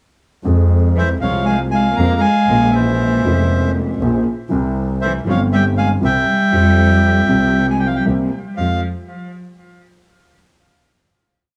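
Dramatic and tense, this short, complete tango in F harmonic minor moves at 118 BPM with a rubato feel, as grand piano and a bowed, biting double bass set out uneven groups of three and two eighths from 0.4 seconds, before a dark, reedy bandoneon enters up front at 1.0 seconds with a motif-based melody partly doubled in thirds, joined by a distant, expressive cello line with vibrato and portamento, both carrying tape echo, in a small room before settling on a closing Fmadd9 chord at 8.6 seconds.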